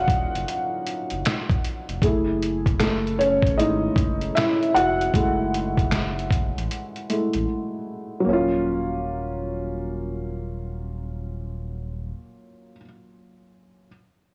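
Reflective and nostalgic, this lo-fi hip hop excerpt at 77 BPM with a swung 16th feel puts a soft, muted felt upright piano up front, its action noise audible through cassette tape and a low-pass filter, over a deep sine-and-triangle sub bass and a compressed, pitched-down sampler kit of thumpy kick, fat snare, hi-hat and finger snaps carrying 12-bit grit, moving between Ebm7 and Gbm7 until the drums drop out at 7.5 s for a brief break, with the mix wrapped in warbling worn tape and small room ambience.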